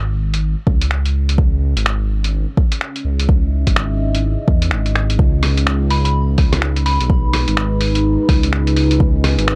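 A swung 126 BPM future garage groove in 4/4 opens with a dark, detuned saw bass that rumbles and beats under sidechain pumping from the start, joined at 0.3 s by a muffled, tape-warm sampler kit of finger snaps, hi-hat and rim click, and at 0.7 s by an overdriven, up-front electronic kick. A moody analog pad with chorus, phaser and 12-bit grit arrives at 2.2 s to carry the C# minor chords, moving to G#m, while a soft, pure FM bell sounds a single B5 from 5.9 s through chorus and analog delay in the background. The rainy, ghostly mix is dry and gritty with little reverb, heard as a cut from a longer piece.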